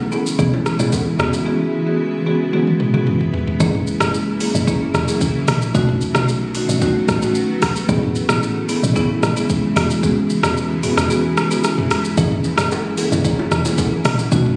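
A light reverb and the sound of a phone recording in the room, plus studio reverb, frame this joyful, romantic afrobeats excerpt at 112 BPM in a straight 4/4. A granular cloud pad holds sustained chords throughout, its blurred, evolving, full-bodied tone softened by slow attacks, long releases and its own built-in reverb, while a punchy FM log drum bass with a woody noise layer and fast, decaying notes anchors the low end. Up front, a marimba played with soft mallets on padauk bars adds round, mellow accompaniment, and an electronic, layered deep house kit, also up front, brings a deep kick, metallic hats, rim clicks, shaker and toms with a tape-warm finish. Bright, vintage-sounding bongos and congas with soft hands sit in the background, appearing at the start until 1.5 seconds and returning from 12.2 seconds. A drum fill closes the opening section before the harmony moves from Amaj7 and E6 through F#7 and B7. 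The kick drops out briefly around 11.1 seconds, and the passage then cycles back through Amaj7 and E6 to F#7.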